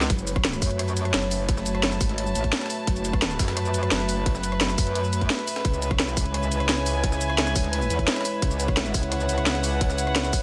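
Lightly reverberant, this aggressive, tense stretch of dark technical drum and bass at 173 BPM in F# minor sits in a drop that moves from F#m to C#m at 5.6 s, driven by a tight electronic kick and an up-front kit of cracking snare, hi-hat, rim click and shaker, with a very quiet, gritty sampler-style breakbeat kit adding ride and high-tuned snare, a saturated, sidechain-pumped metallic wobble bass with overdrive, a moody, detuned analog pad with chorus sustaining chords, and a distant, reedy chamber string section with gut-string tone and light vibrato bowing above.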